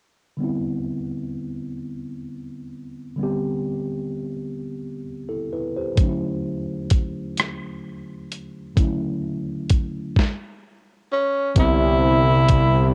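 Slow six-eight R&B with a sensual, intimate mood, heard in a short cut from a longer piece. A worn, mellow tine electric piano, slightly out of tune, opens alone at 0.4 seconds, moving from Cmaj9 to Dmaj9 with a cassette-tape character. A dusty, sampler-style soul drum kit arrives at 6.0 seconds, compressed and gritty, with a thumpy kick, a medium-tuned snare, rim click and hi-hat, also coloured by tape. Near the close, a breathy tenor saxophone takes a jazz-style solo line with subtone, vibrato, soft attacks and scooped notes, and a fat, detuned sawtooth analog bass joins at 11.6 seconds on a low C, saturated and thick with a filter pluck as the harmony returns to Cmaj9. The parts sit up front in a home-recorded cassette sound with digital ambience.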